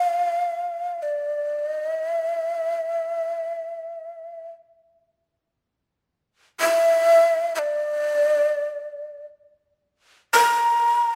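A breathy, close-miked bamboo shakuhachi plays solo in free time throughout this brief, meditative and solitary fragment of traditional Japanese chamber music, its crisp, chiffy attacks and vibrato, warm yet unsteady, sitting up front in a light reverb.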